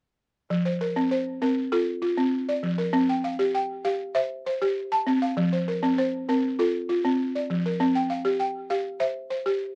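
A straight 4/4 pulse at 99 BPM carries this hypnotic West African traditional passage in F major, cut from a longer piece, with a lone balafon sounding from 0.5 to 9.8 seconds. Struck with soft rubber mallets, the woody, buzzing balafon sits up front and mid-forward. It ranges from F3 to A5 over a steady alternation of F and C. Recorded outdoors, the dry sound carries only light reverb.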